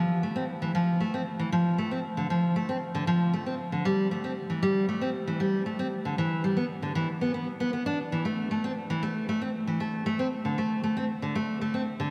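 Soaked in a dreamy cathedral reverb, this playful, delicate folktronica piece at 116 BPM in 4/4, tuned to A4 = 435 Hz, features a lone fingerpicked steel-string dreadnought guitar, dark and full-bodied with fresh strings, sitting up front with delay across its 12.1-second span.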